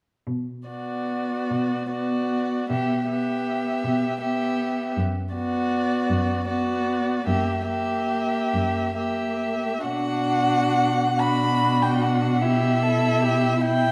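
A single bowed violin carries the melody up front, its expressive line colored by vibrato, soft attacks and portamento. This is a slow, romantic movement for string quartet in 6/8, shaped with flexible rubato and a yearning, solemn mood. The cello enters first at 0.3 seconds with a rich, up-front bass. At 0.7 seconds the second violin joins with a lower line and the viola adds accompaniment, both bowed with vibrato and portamento. The harmony moves from Bm toward an F#7b9 chord, and a second section from 9.9 seconds returns to Bm before settling onto Em/B. A wet recital-hall reverb gives the dark production a lingering bloom, and the recording is cut from a longer piece.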